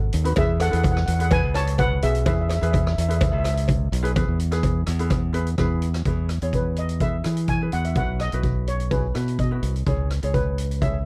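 A mellow, shimmering double-seconds steel pan, played with soft rubber sticks and heard in a boxy small room, carries the melody of this bouncy, festive calypso excerpt. It drops out at 3.6 seconds and returns at 6.5 seconds. Underneath, a bright, direct fingered electric bass sits up front, while a street-band drum kit keeps a straight 4/4 pulse on hi-hat, boomy kick and rim click, with a mid-forward, rolled-off top. A light, thumb-plucked ukulele adds gentle acoustic accompaniment, and a close, dry cowbell ticks away in the background until 5.7 seconds. The harmony rests on E before moving through E6, Bsus4 and C#m7, all captured in a dry, close 1970s-style studio sound with little reverb.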